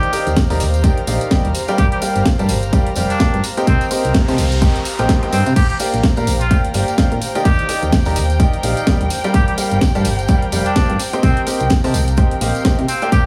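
Piano house at 127 BPM with a swung 16th-note feel, this feel-good, uplifting excerpt rides a clear baby grand piano riff and a round, punchy FM bass, both pumping with sidechain, over a layered, tape-warm electronic kick, a house kit with a cracking snare, hi-hat and crash, and a tambourine tucked in the background. A nasal, straight-muted jazz trumpet carries the melody through dub echo, which also trails the piano, while an airy, breathy pad with chorus floats behind the chords of Ebmaj7, Gm7, Cm7 and Bb6. A background noise sweep passes from 4.2 to 5.6 seconds, and at 5.6 seconds a dark, bowed chamber string section enters with soft-attack sustained chords in a light small-room ambience.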